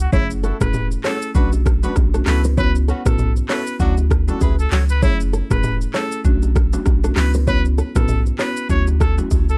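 A dark, warm production with little reverb carries this sultry, hypnotic afrobeats excerpt in F# minor at 98 BPM, its swung sixteenths cycling through F#m7, Bm7, A69/C# and Dmaj7. An electronic afro-pop kit with a deep kick, smooth hats, handclaps, rim clicks, shaker and toms sits up front beside a punchy sine sub bass, while a buzzing, woody marimba, a fingerpicked nylon-string guitar riff with delay, and soft-handed congas and bongos in the background fill out the groove. A bright trumpet melody with scooped notes and delay leads throughout, joined from 0.4 to 4.8 seconds by a horn section with vibrato and a smooth top.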